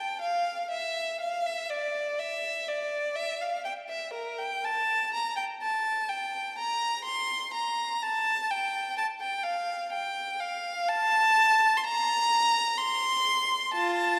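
A single bowed violin sits close and up front, its warm, vibrato-rich tone shaped by soft attacks and expressive portamento as it ranges from F4 to C6 across the whole 14.2 seconds. This flowing, dance-like passage from a baroque-style suite movement for unaccompanied violin is in F major at a rubato 62 BPM in 4/4, tuned to A4 = 441 Hz. A generous concert-hall reverb with a 2.5-second decay surrounds the violin, giving the church-like space a spacious, resonant glow.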